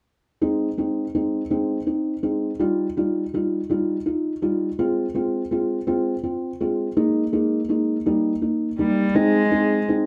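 A felt-muted upright piano carries this brief, tender pop excerpt in a slow, straight 6/8, its thick-felted tone soft, dark and intimate, sitting up front as it moves through gentle, romantic chords. Near its close, at 8.8 seconds, a single bowed cello enters for a moment with a pure, floating sul tasto line before the piano stops at 10.1 seconds. The pair sound like a small group playing live in one room, framed by moderate studio reverb.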